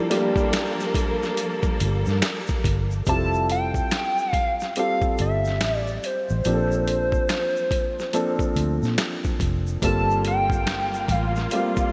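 Soaked in a lush hall reverb, this dreamy, sultry neo-soul R&B excerpt moves at an unhurried 71 BPM with a swung sixteenth-note feel over Gm9, Fmaj9, Bbmaj9 and Gm11 harmony. A hollow, woody square-wave lead with chorus, delay and vibrato carries the introspective melody over an intimate grand piano whose action noise is audible. A gritty, pitched-down boom bap kit with a thumpy kick sits up front alongside a soft egg shaker and snaps, while a round, foam-muted electric bass arrives at 1.8 seconds and bowed strings with portamento frame the opening and return at 9.8 seconds.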